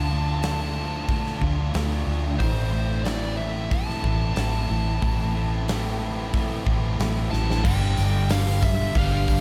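A hazy, melancholic wash of guitars under light reverb opens this short cut from a longer shoegaze and dream pop rock piece, moving at 91 BPM in a straight 4/4 in A minor. A thick fuzz guitar and an overdriven electric guitar treated with reverse reverb play riffs together, the fuzz part thickened with ensemble chorus, while a fuzz lead guitar carries the melody through distortion and tape echo. Underneath, a vintage muted fingered electric bass sits up front with a dark, round, foam-muted tone, and a big rock drum kit enters at 0.4 seconds with a punchy kick, medium-tuned snare and bright cymbals ringing in a big room. The harmony moves from Dm to Am, and a drum fill at 7.3 seconds leads into a new passage on G5, where a double-tracked overdriven guitar with lush chorus takes over the riff. A jingly tambourine joins at 8.0 seconds, very quiet and distant in a large room, as the layered haze carries on to the end.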